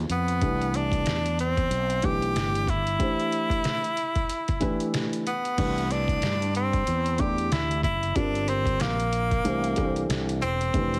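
Heavily compressed and radio-like with a light reverb, this cool, relaxed jazz-hop excerpt sets a bright, vibrato-laden tenor saxophone solo up front over a dark, woody upright piano, a fretless electric bass and a gritty, pitched-down sampler-style drum kit with a thumpy kick, hi-hat, snare and crash, all riding a swung groove that moves from Cmaj7 to Gm7 and C13 near the end.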